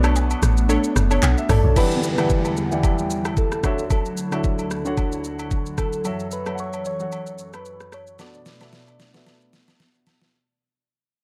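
Amapiano at 112 BPM in E dorian with a lightly swung 16th feel; the mood is deep and hypnotic, and the recording is cut from a longer piece. A round, percussive log drum bass and a punchy, detuned sawtooth chord stab with chorus and tape echo sound only in the opening drop, falling away at 1.7 s. Meanwhile a warm grand piano, a hollow, flute-like pad with sidechain pumping, and an electronic R&B kit with a knocking kick, deep snare and metallic hats carry on, with close, dry agogo bells and woodblock in the background. From 1.5 s a gentle, keys-like FM synth lead carries the melody, and from 1.8 s a background downlifter passes through, while the dark mix with little reverb fades out under a filter sweep and closes with a drum fill from 8.2 s.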